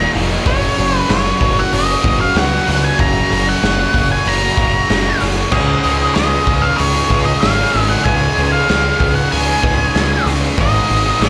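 Dark and brooding, this 95 BPM quiet-loud alternative rock excerpt, heard live through a club PA with light reverb, sets a distorted, shadowy octave-fuzz lead guitar melody over three picked riff guitars (a very quiet crunchy overdriven one, a bright double-tracked distorted one with slapback echo, and a thick fuzz one also with slapback), a round, growling overdriven bass up front, and a punchy, gritty garage drum kit entering at 0.1 s with crash, hi-hat, kick and snare, as the chords move from Gb through Dbadd9 to Abm.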